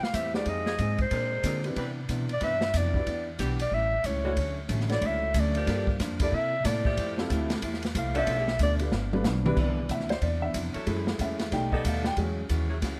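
A brisk 4/4 swing at 184 BPM drives this energetic, brassy big band jazz passage, cut from a longer piece. A breathy clarinet carries the melody up front, with vibrato and scooped notes over a smooth top. Beneath it, a pizzicato upright bass sounds woody and thumpy, while an open drum kit adds dark cymbals and a boomy kick. A clean, picked hollow-body archtop guitar and an intimate concert grand with audible action noise fill out the accompaniment, and a tight, close-miked saxophone section holds sustained chords with light vibrato. After a drum fill from 8.9 to 9.6 seconds, the grand piano takes the solo to the close, all framed in light reverb.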